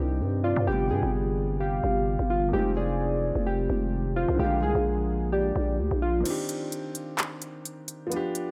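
This melancholic, hard-hitting trap excerpt moves at 129 BPM in a half-time feel in C minor, cycling through Cmadd9, G7, Fm7 and Bb7 before landing back on Cmadd9. Warbly, lo-fi synth keys with a nostalgic, mellow chorus tone carry the melody, while a concert grand piano with deep bass supplies the accompaniment throughout. A growling, buzzy 808-style bass sits up front, and a dark analog pad holds very quiet, evolving sustained chords underneath. A soft, octave-layered synth lead adds a round, full second line with vibrato, chorus and tape echo. At 6.3 seconds the other parts drop away for a break in which a crisp, electronic trap kit of crash cymbal, handclaps and hi-hat plays with the piano under light reverb and digital ambience, until the end at 8.5 seconds.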